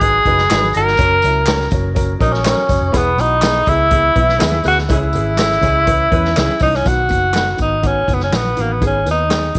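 Uplifting and danceable 1960s-style soul, led up front by a breathy tenor saxophone with vibrato and scooped notes over a woody upright piano, a round, foam-muted electric bass with tube saturation and a vintage drum kit with a punchy kick, while a bell-like glockenspiel played with soft plastic mallets rings in the background until 6.6 s, handclaps and tambourine sit close and dry behind, congas are barely audible, and a smooth horn section adds a very quiet line from 4.9 to 5.9 s during a band accent, all in light small-room reverb.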